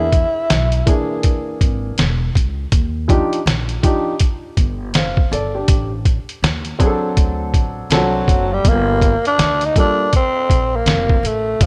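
Light studio reverb gives this short jazz-hop cut a smooth, warm sheen, with a muffled, pitched-down sampler-style drum kit sitting up front, its thumpy kick, compressed hi-hat and medium-tuned snare swinging at a relaxed 81 BPM in 4/4. A woody pizzicato upright bass on gut strings and a dark, mellow grand piano carry a jazzy progression from E7#11 through Ebmaj9 and D7 to Gm9, and the piano drops out at 10.1 seconds. A breathy, raspy tenor saxophone growls briefly at the opening, then returns up front at 7.9 seconds with scooped, vibrato-laden subtone phrases.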